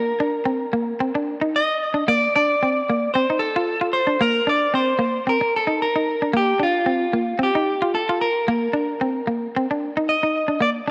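Bathed in a moderate plate reverb, this sunny, carefree highlife fragment from a longer piece sways with a light sixteenth-note swing as an up-front, warm, clean picked electric guitar carries the melody through vibrato and tape echo while a second bright, clean picked electric guitar, equally forward, picks out the accompanying chords beneath it.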